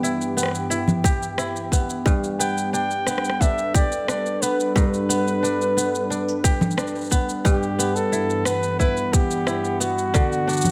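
A light reverb and a digital ambience frame this short, hopeful folktronica passage, cut from a longer piece, with a nostalgic, lo-fi glow. A warbling, detuned pad holds sustained chords throughout, its slow attack, long release, chorus and built-in reverb giving it a mellow, tape-like haze. Up front, a bright, fingerpicked kora rings out crisp arpeggios alongside an overdriven electronic shaker, rim click and congas, while a tight, produced electronic kick drum with a small-room character enters at 1.0 seconds. At 2.4 seconds a breathy flugelhorn takes the solo melody in an intimate, jazz style, its whispered tone, soft attack and vibrato trailed by delay. The harmony settles on G after an opening Em/G, shifts to Em7/G, and closes on Dadd9.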